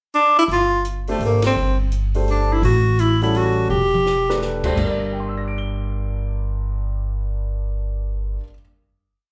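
Heard through a club PA with light reverb, this short, complete modal jazz piece in 3/4 carries a spiritual, searching mood and a swung lilt. Entering in the brief pickup, a close-miked tenor saxophone with subtone and light vibrato sits up front, stating a motif-based melody in sentence-like phrases. An upright bass plays a woody, thumpy pizzicato two-feel line, while a compact cocktail drum kit with dark cymbals, a high-tuned snare and a punchy kick keeps time on the hi-hat with sticks, marking a band accent early on and a fill from 3.7 to 4.4 seconds. The intimate grand piano, its action noise audible, comps in syncopated quartal voicings with long sustain over suspended harmony, and both it and the saxophone carry a slapback echo. The saxophone stops at 4.4 seconds, and piano and bass hold a final minor chord to close.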